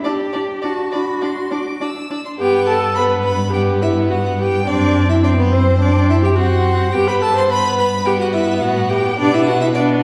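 Straight 4/4 at 106 BPM drives this spirited, graceful classical-period string quartet movement in G major, cut from a longer piece, where a rich, smooth first violin sings the melody from a distance, a focused second violin adds a second line, the warm viola gives expressive accompaniment with portamento, and an up-front cello anchors the bass with vibrato and sliding portamento, each part bowed by a single player in a wet recital hall reverb heard from further back in the room.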